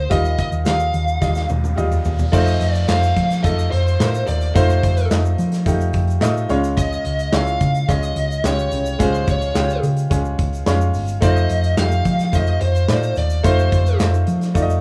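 A straight 4/4 pulse at 108 BPM drives this uplifting, anthemic piano-driven pop clip, cut from a longer piece and carried by a loose indie drum kit whose punchy kick, medium-tuned snare, dark cymbals, hi-hat, toms, crash and handclaps sit in a pumping small room. A bright, woody upright piano with short sustain sits up front as the accompaniment, moving from Ebadd9 to F7, then to Db and back to F7. Beneath it, a round, hollow-body short-scale picked electric bass gives a dark, amped low end and is the loudest part in the mix. A lead guitar through a small cranked amp carries the melody with overdrive and tape echo until 14.0 s, while a grainy tube shaker ticks along in the background. Early on, an electronic riser builds from 1.1 s alongside a drum fill, leading into the second section at 2.3 s, all captured as a rough home demo with small room ambience and little reverb.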